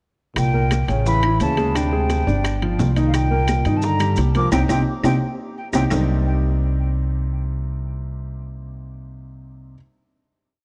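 Driving and fiery, this short Afro-Cuban jazz piece in C minor races along at 173 BPM, with a breathy, tongued concert flute carrying a motif-based melody over a trombone harmony line mostly in sixths, a woody pizzicato upright bass playing an up-front tumbao, a baby grand piano montuno in octaves with audible action noise, and a percussion bed of bright congas, tight bongos, ringing timbales, clave time line and grainy maracas, all but the bass and piano stopping after a band accent and drum fill near 5.9 seconds to leave a dreamy, reverb-soaked, cassette-tinged Cm9 final chord.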